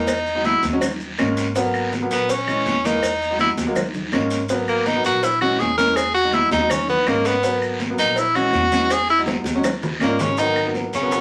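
Driving and fiery, this Afro-Cuban jazz excerpt moves at 163 BPM in a straight 4/4 in G# minor, cut from a longer piece. An edgy, forceful tenor saxophone sits up front with a solo running to 10.4 seconds, its punchy tone carrying vibrato and scooped notes. Beneath it, an intimate grand piano with audible action noise and long sustain comps through a looping Emaj7, D#7sus4, G#m7 and A#m7b5 progression, while a dark, thumpy pizzicato upright bass anchors the low end. The percussion stays in the background: bright, high-tuned congas in a distant large room, round low-tuned cowbell and bongos, woody claves, a raspy guiro and grainy vintage maracas, with a drum fill arriving at 9.3 seconds. At 10.0 seconds a breathy, whispered trombone enters with a mellow second line and light vibrato, all within a wet studio reverb.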